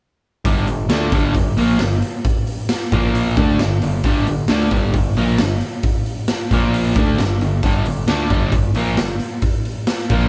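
Hard rock with a menacing, driving mood, this short cut from a longer piece moves in a straight 4/4 feel and sounds like a band playing live together in a small room with a moderate touch of reverb. A sludgy distorted guitar sits up front with a dark, overdriven picked riff from 0.4 seconds, joined at 0.5 seconds by an overdriven semi-hollow guitar whose hollow-body tone stays in the background. A modern picked electric bass adds a bright, growly, direct presence beneath them, also tucked back in the mix. The raw garage drum kit is placed up front, with hi-hat, a punchy kick and a medium-tuned snare sounding saturated and gritty, with a rolled-off top and a pumping, stony room character. The riff leans on G minor, shifting briefly to a Bb power chord before returning, and the band plays through to about 10.3 seconds.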